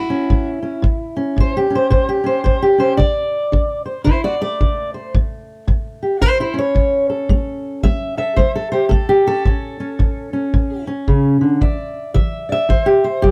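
A loping swung shuffle in four drives this laid-back, rollicking slice of acoustic country blues, cut from a longer piece. A fingerpicked steel-string acoustic guitar carries the melody from the first moment. Its tone is dark and up front, with a plate reverb adding an auditorium-like bloom. A kick drum joins at 0.3 s, punchy yet smooth, with a rolled-off top and a brushed, small-room character. The harmony moves from A7 to a D7 lacking its third, settles on A, then turns to an E7 lacking its third at 11.6 s. The pair sit in a modest booth ambience, heard from further back in the room, giving the duo an intimate, homespun feel.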